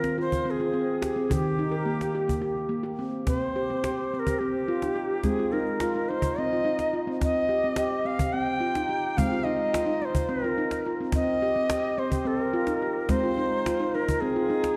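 A bright cedar flute in the Native American style sits up front, its pure wooden tone carrying a crisp, chiffy attack, vibrato and lifted highs as it sings the melody through a diffuse ambient delay. Beneath it, a handpan of nitrided steel rings out mellow arpeggios under soft fingertips, its band-limited, vintage character also bathed in delay and placed close to the listener. A snappy cajon with snares adds percussion from close and dry, struck with hard hands at a lower level than the other two parts. This calm, gentle world piece moves in a meditative 7/8 with a straight feel, its harmony drifting from Fm/Eb and Eb to C5 at the shift at 3.3 seconds, then into a longer stretch that alternates Ab and Cm. A scoring-stage reverb with small-room ambience wraps the dark, warm production, and the fragment is cut from a longer piece, running all three instruments together for its full 14.8 seconds.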